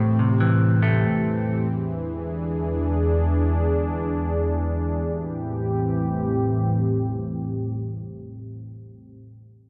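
A dark analog pad of detuned sawtooth and triangle tones with a sub octave carries this tense, ominous hip hop fragment in free time, its slow-attack, long-release chords softened by chorus and a low-pass filter as they move from Am7 to E7 and back to Am7 in A minor, tuned to A4 = 439 Hz. A clean, fingered hollow-body electric guitar sits up front under its own low-pass filter for only the first 1.7 seconds, while a filter sweep shapes the opening 5.0 seconds before the pad carries on alone until 9.2 seconds. Light reverb and a dense, heavily limited modern master frame this cut from a longer piece.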